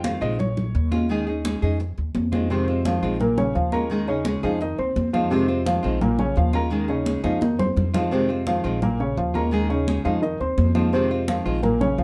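This is a Cuban son and guajira excerpt in straight four, cut from a longer piece, with a danceable, warm mood. A dark, mellow grand piano sits up front with arpeggios, its worn, intimate tone carrying audible action noise, and it takes a solo over the opening 2.5 seconds. A fingerpicked nylon-string guitar, also up front, adds classical accompaniment with fresh strings and audible finger squeak, while a woody, thumpy upright bass with gut strings anchors the bottom in pizzicato. Bright, high-tuned congas with a thin skin are struck with hard hands, their sound compressed and saturated, and a drum fill arrives at 7.2 seconds. The harmony cycles through Bbm7, Eb7sus4 and Fm7, all under a light reverb.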